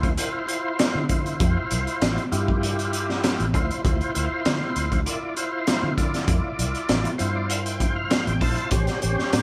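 A straight-eighth groove in 4/4 drives this short, mournful cut of soul blues, taken from a longer piece. A crunchy breakbeat drum kit sits up front with a punchy kick, a high-tuned snare and hi-hat, its saturated, dark sound carrying a rolled-off top. Underneath, a vintage fingered electric bass gives a round, foam-muted low end. An overdriven tonewheel organ supplies a thick, gritty accompaniment with audible key click, turned through a slow rotary speaker and chorus vibrato, and it plays a fill from 6.9 to 8.7 seconds. The harmony rests on Dm7 before shifting to A7#9 at 8.7 seconds, all captured as a band playing live in one room with light reverb.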